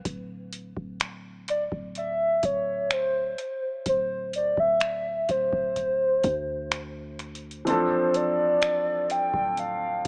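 A booming analog drum machine with finger snaps, metallic hi-hats and a tape-echoed deep kick opens this late-night, longing contemporary R&B fragment alongside a mellow, sine-like 808-style bass; a hollow, woody clarinet-like synth lead with chorus, phaser, vibrato and tape echo enters at 1.5 seconds, and a clear, intimate baby grand piano with audible action noise arrives on a Dm7 chord at 7.7 seconds as the kick briefly drops out, all in an echo-heavy mix with light digital ambience and a small-speaker sound.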